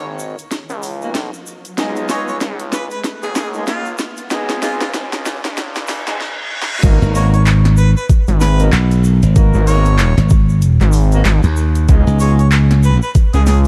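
A dark, warm digital ambience with vinyl crackle frames this swaggering, gritty glitch hop excerpt at 95 BPM in G# dorian, swung on the sixteenths. A clear, close-miked harmonica carries the melody throughout, with light vibrato, scooped notes and a digital delay, over a saturated, aggressive synth bass whose sawtooth and sync tones evolve under a high-pass filter. A grainy egg shaker sits in the background from 0.2 seconds, and an overdriven drum kit with a cracking snare, bright hats, handclaps and crash enters at 0.4 seconds, while a distant, roomy horn section punches dark, pumping stabs from 1.0 seconds over C#9 harmony. The first half is a build-up, with a riser, a filter sweep, drum fills and a reverse cymbal, before the drop lands at 6.8 seconds on G#m9. There an up-front, knocking electronic kick and a glassy, punchy slap bass join the groove, and the harmony returns to C#9 near the close.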